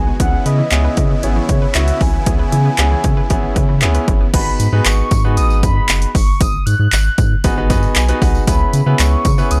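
Dance-pop with a driving, confident feel, this excerpt opens with a mellow, horn-like synth lead carrying the melody over clear concert grand piano, deep round sub bass and a punchy, overdriven analog drum machine of kick, handclaps, hi-hat and crash, with the bass, piano and pads all pumping against the kick. Huge, lush supersaw chords and a hollow, nasal square pluck playing arpeggios sit in the background until 4.3 seconds, when a jingly tambourine enters. The piano adds a fill from 7.4 to 8.5 seconds, all within a dry, gritty sound touched by digital ambience.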